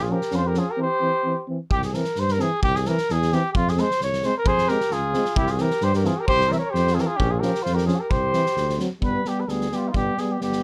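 A mellow cornet leads this restless, fiery Balkan brass band piece at 131 BPM in a straight 2/4, its lightly vibrato-touched melody sitting up front yet with a distant, roomy sound in C phrygian dominant. A dark, smooth-topped trumpet plays a second line that drops out at 1.5 seconds and returns at 4.5 seconds, while French horn and close-miked warm trombone supply accompaniment over a tuba bass. A loose acoustic drum kit with a punchy kick, a medium-tuned snare and a rolled-off top drives from the back of a studio room, all under light reverb, as the chords move from Bbm and C through Fm to D7 and G in this cut from a longer piece.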